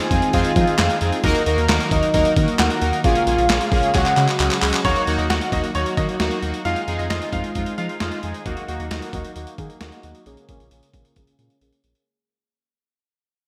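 A straight 4/4 groove from a gritty, overdriven boom bap sampler-style drum kit with a thumpy kick, high-tuned snare, hi-hat, handclaps and gated reverb drives this nocturnal synth-pop excerpt, as a round, deep analog bass joins fat, nasal analog synth brass sitting up front over organ-like ensemble organ-string chords in the background, while a velvety synth lead with chorus, tremolo and delay carries the melody until 4.6 s, a drum fill at 3.9 s leads into a brilliant grand piano second line with delay from 4.8 s, and a filter sweep and fade-out close this lush, hall-drenched slice of bright 1980s-style digital production.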